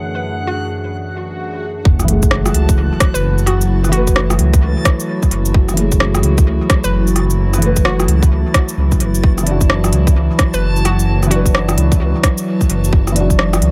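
This excerpt sounds dry and echo-heavy, a wistful, ghostly slice of future garage at 130 BPM in F# minor, swung on the sixteenths. A felt-muted upright piano, soft and boxy, and a warbling, nostalgic tape-like pad open together from 0.0 seconds on a Dadd9/F# chord. A reversed, dreamy texture glimmers high in the background, with a filter sweep running beneath. A hollow, bouncy square pluck carries the melody from 0.5 seconds through chorus and tape echo, while a background swell and sub drop build toward an impact at 1.9 seconds. There the music moves to F#m9 as a deep, rumbling detuned saw bass and a tight, overdriven electronic kick arrive up front, with the bass, piano and pad all pumping under sidechain compression. From 2.0 seconds an organic electronic kit adds crisp hats, rim clicks and shaker through dub echo, and the harmony returns to Dadd9/F# at 9.2 seconds.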